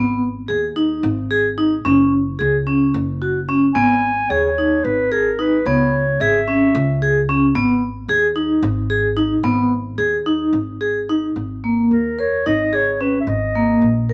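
Contemporary instrumental chamber music in an urgent, restless 7/8 at 221 BPM counted in eighths, this fragment in G# minor is driven by up-front vibraphone arpeggios, metallic and ringing under medium mallets with medium motor vibrato, over a woody pizzicato upright bass. A mellow, smooth-topped clarinet enters at 3.7 seconds with a classical-style solo melody and returns at 11.9 seconds as the harmony moves from G# minor and C#m7 to a G#sus2 chord. Moderate studio reverb gives the trio a sense of room.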